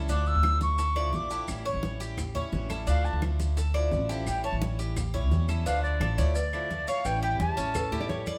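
Driven by a straight 172 BPM pulse in 4/4, this danceable, sultry Cuban son and guajira fragment in D harmonic minor puts a growly, woody pizzicato upright bass up front beneath a pure, expressive flute melody with vibrato and a crisp attack, while a metallic, double-strung Cuban tres plays arpeggios, a boxy picked swing-style acoustic guitar accompanies, hard-handed congas, round soft-handed bongos and cowbell, grainy vintage maracas and very quiet dry claves fill out the percussion, and a fingerpicked nylon-string guitar with finger squeak adds a brief second line at 7.7 s, the live band sharing a moderate stone room.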